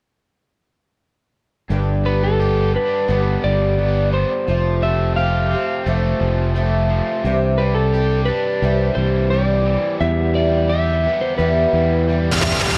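A worn, warbling cassette-tape sound with drifting pitch colors this short rock passage, set in a light reverb that lends it a nostalgic, open-road mood. From 1.7 seconds, a picked twelve-string acoustic guitar supplies boxy, shimmering, octave-doubled accompaniment, while a bright, crunchy overdriven electric guitar, double-tracked and picked, carries the riff. A fingered electric bass sits up front with a warm, direct and amped tone, holding down the low end. At 2.1 seconds an electric slide guitar enters with the melody, its dark, slightly broken-up voice compressed and sung through the slide in a higher register. The harmony moves from G to Fadd9, then Cadd9 and Em, before the passage is cut off at 12.8 seconds as part of a longer piece.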